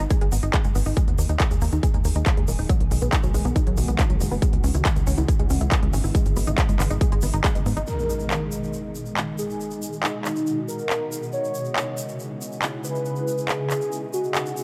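A dark, lightly reverberant production frames this euphoric, soaring stretch of uplifting trance, cut from a longer piece. An up-front punchy kick and a tight, driving, sidechain-pumped bass sit under lush, detuned unison pluck arpeggios coloured by phaser, pumping and tape echo, while crisp hats, handclaps and a grainy, bright egg shaker fill out the rhythm. By 7.9 seconds the kick, bass and pluck have dropped away: an electronic impact hits, and a velvety, smooth synth lead with chorus, vibrato, cassette-tape colour and tape echo enters over the drum kit and shaker.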